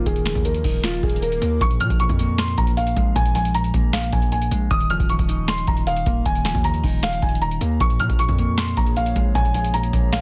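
A dark, melancholic trap excerpt in Bb minor at 155 BPM with a half-time feel, led by a dark, boxy concert grand piano playing the melody up front with delay and audible action noise, over a clean, fingered electric guitar accompaniment. A booming analog drum machine with a deep kick, tonal snare that is soft-clipped, metallic hi-hats and finger snaps drives the groove alongside a punchy, saturated 808-style bass. A warbling, lo-fi pad with chorus sits in the background for the first 1.6 seconds and returns at 7.8 seconds, joined early by a brief electronic swell, all within digital ambience and a dense, heavily limited master.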